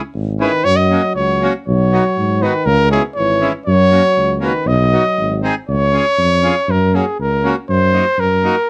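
A mellow, close-miked tuba opens this festive alpine dance band snippet at 0.1 s, setting a bouncy bass line in a straight 2/4 at 120 BPM in B major. A moment later the trumpet takes the melody up front, with a warm tone, soft attack and classical poise. A reedy accordion fills the middle as accompaniment, and a euphonium with light vibrato carries a second line from a distance in the background before dropping out at 5.4 s. The harmony circles through C#m, F# and B, then a G#7 lifts the tune into Db major at 5.7 s, where the trumpet, tuba and accordion continue over Db, Gb and Ebm/Gb. Light reverb gives the band a gentle sense of space, and the top end stays soft and rounded.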